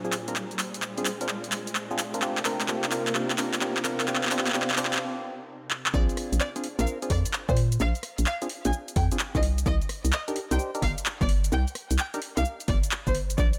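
UK garage in a two-step groove at 129 BPM with a 66% shuffle, this late-night, bouncy passage in C minor opens with a build-up: a silky, vintage string machine holds Bb9 and Cm7 chords under sidechain pumping and sampler grit, a hollow organ stab with chorus, phaser and tape echo runs through a filter sweep, a background riser builds until 5.0 s, and a dry, overdriven analog drum machine of handclaps, hi-hat, rim click and shaker plays a fill before a brief break. At 5.9 s the drop arrives as the string machine stops and a knocking FM bass and a punchy overdriven kick enter, while a close, reedy chamber violin section with light vibrato and tape echo takes up the melody over the same two chords. A lush hall reverb lends depth, while the bass and drum machine sit up front.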